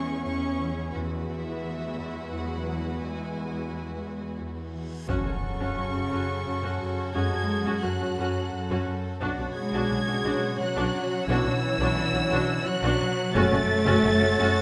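A tense, eerie cinematic suspense cue in F# minor at 87 BPM in 3/4 opens with lush, bowed strings, where a rich violin section carries a vibrato-laden melody over a close second violin line, distant focused violas, smooth background cellos and intense double basses, all joined by a ringing fingerpicked harp riff, until a huge, bright reverse cymbal at 5.0 seconds and an impact at 5.1 seconds bring in a mellow, roomy solo clarinet line and dark sustained French horn chords, with the whole ensemble set in a moderate scoring-stage reverb.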